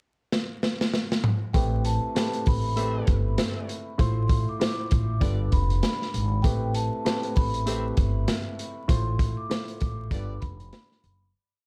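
A crunchy breakbeat kit opens at 0.3 seconds with a fill of hi-hat, toms, kick and snare, then settles into a swung boom-bap beat at 98 BPM in 4/4, its tight, hard kick and backbeat snare sitting up front with a saturated, rolled-off top. This tough, gritty hip hop piece in A minor drops into its hook at 1.5 seconds, where a woody pizzicato upright bass lays down a deep looped line with chromatic approach notes, and a dark concert grand piano plays chopped, short-sustain chords repeated like a sampled loop over Am7, Dm7/A and G7. Above them, a vibraphone with soft mallets rings out a short looping melody, metallic and mellow with slow motor vibrato, a boxy small-room character and tape echo. From 2.8 seconds a bright horn section sits in the background with short jazz-style stabs, lightly vibrato and touched with tape echo. The dark, warm production carries vinyl crackle and light reverb, and the whole piece fades out from 8.9 seconds to its close.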